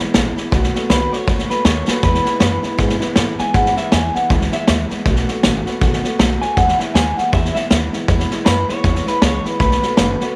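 A bright, twangy electric guitar with tape echo carries the melody from 0.9 seconds over a gritty, up-front vintage drum kit with a tight kick and a drum fill at 1.8 seconds, a woody, thumpy upright bass and a full-bodied picked dreadnought acoustic guitar with audible finger squeak, giving this short, swung rockabilly excerpt a rollicking, rowdy feel in a small room ambience.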